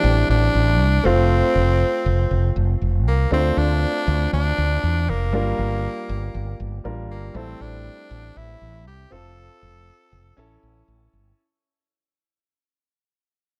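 A raspy, gritty tenor saxophone carries a forceful, vibrato-laden pop melody with a digital delay from the first moment, over polished baby grand piano accompaniment and a round, up-front fretless electric bass thickened by analog chorus. This nostalgic, moody 1980s-style pop passage moves through Am7, F, Dm7 and Gm7 in a straight 4/4, fading out across its full length, with the saxophone dropping away at 10.6 seconds. Light reverb and small-room ambience give the dark production a close, intimate feel.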